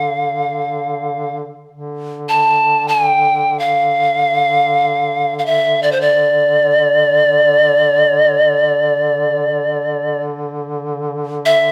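Caucasian folk lament in free time and D minor, longing and mournful, this excerpt sets a breathy, hollow bamboo pan flute up front on the melody between C5 and A5, its crisp, chiffy attack and vibrato carrying the line. Beneath it, a close-miked duduk holds a low D3 drone with its own vibrato, far quieter than the flute. A moderate recital hall reverb surrounds both, and the tempo slows from 8.5 seconds to the cut at 11.7 seconds.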